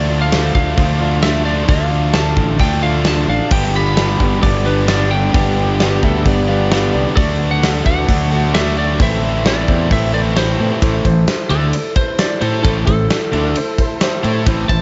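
This driving, gritty classic rock excerpt at 132 BPM in A minor opens with a twangy, compressed lead guitar melody over an up-front, growly fuzz bass, two overdriven riffing guitars in the background (one cranked and bright, one sludgy), and a very quiet, shouting tonewheel organ with key click and rotary speaker. A woody, boxy upright piano with audible action noise and a big-room rock kit with a tight kick and medium-tuned snare join within the first moments. A background slide guitar adds a brief second line from 5.8 to 7.1 seconds, the chords move through Dm, G, D and Amadd9 under light reverb, and the lead guitar takes a solo from 10.8 seconds.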